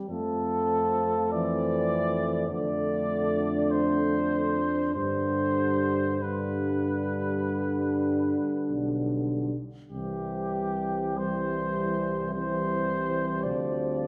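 A bright trombone and a mellow euphonium open the excerpt with accompaniment, joined at 0.1 seconds by the rest of the brass band in this slow, rubato, hymn-like classical piece in C major at around 45-54 BPM. Up front, a mellow cornet with light vibrato sings a lyrical melody that sounds distant and roomy, while a close, tight French horn section carries a second line, the euphonium and trombone sit in the background, and a tuba anchors the bass. The harmony moves from F through Dm/F and G to settle on C at 9.9 seconds, all heard from further back in a recital hall with a lingering reverb.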